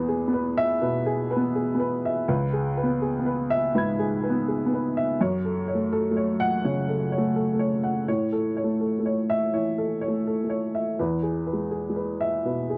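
A woody upright piano plays alone, close and up front in a dry 1970s-style studio sound, drifting in free rubato through E, C#m7, F#m and A before returning to E, a reflective, melancholic neoclassical minimalist passage spanning the low to high registers and cut from a longer piece.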